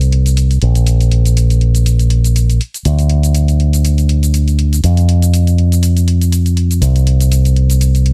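A bright, up-front fingered electric bass with an envelope filter carries this feel-good, sunny nu-disco excerpt, sitting low in its register and sounding direct and amped. Behind it, a layered electronic hi-hat and shaker add to the lightly swung sixteenth-note feel at a much lower level. The sound is dry, and both parts play throughout the roughly 8-second clip cut from a longer piece.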